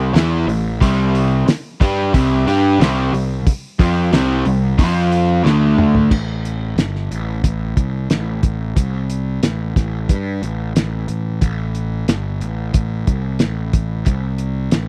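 Classic rock at 90 BPM in a straight 4/4, swaggering and driving, with an up-front overdriven semi-hollow guitar riff that is double-tracked and hollow-bodied and plays over A5, C5, F5 and D5 power chords until 6.1 seconds. A drum fill at 5.5 seconds carries it into a section where the guitar drops out, leaving the growly, bright fuzz bass and the cloth-damped, thuddy kit, with its muffled dark cymbals, fat snare and tight kick, to carry on until 14.9 seconds. The sound is dry and close, with a 1970s small-room character and a lo-fi, rolled-off top on the drums, and the clip is cut from a longer piece.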